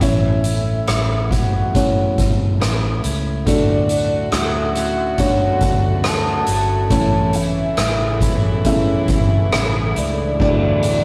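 A tender pop ballad at 69 BPM in D major opens on a soft, round synth lead with chorus, tremolo and vibrato singing over felt-muted upright piano with audible action noise, a clean direct-recorded electric guitar playing spring-reverbed arpeggios in the background, a foam-muted, punchy bass and an up-front soft-mallet drum kit with dark cymbals and a boomy kick, before a dark, floating bowed string section joins with sustained chords at 3.5 seconds, all captured in a rough, tube-saturated rehearsal room with a wet small-room ambience.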